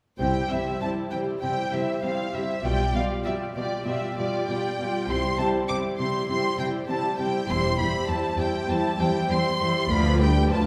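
Bathed in the wet reverb of a church or concert hall, this spirited, graceful fragment of a quick classical-period movement for string orchestra in C major moves at 99 BPM in 4/4 with a rubato feel. An up-front, warm violin section carries the expressive melody with vibrato and portamento above a woody second violin line, a lush, dark viola accompaniment, a distant cello bass and a soft-attacked double bass section, all bowed, as the harmony travels from C through G7/B to G7/D.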